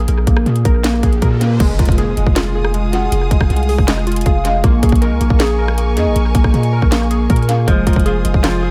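Menacing and hard-hitting, this trap excerpt moves at 158 BPM in a half-time 4/4 feel in F minor, cut from a longer piece and set in an echo-heavy digital ambience. Glassy, detuned digital keys spin arpeggios through chorus, tape echo and a low-pass filter sweep from the start, while a deep, sine-toned 808-style bass holds long, sustained notes up front. The trap kit hits with a hard-clipped kick, a sharp snare, metallic hi-hats, handclaps, rim clicks and crash cymbal, its tape echo trailing the hits. A very quiet electronic riser leads into an impact at 1.6 seconds, where a lush, distant string section enters with bowed, vibrato-rich sustained chords over a move from Fm7 to Bbm7. A hollow, woody synth lead with a warbling, vintage square-and-triangle tone sits dark in the background as a second line, and at 7.7 seconds a clean, picked semi-hollow electric guitar adds a filtered F3 as the harmony returns to Fm7.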